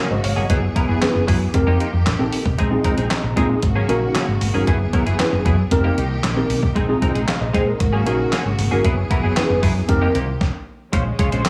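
Danceable and funky, this short cut of early-eighties boogie funk at 115 BPM cycles through suspended ninth chords over an up-front, thumpy 12-bit drum machine with a fat snare, handclaps and hi-hat, a dark, round fretless bass, a worn, slightly out-of-tune tine electric piano with ensemble chorus that drops out at 10.2 seconds, a clean, compressed semi-hollow guitar riff through analog chorus, and lush bowed studio strings holding sustained chords, set in a small room with light digital reverb, before a brief stop at 10.4 seconds gives way to a Bbm9 at 10.9 seconds.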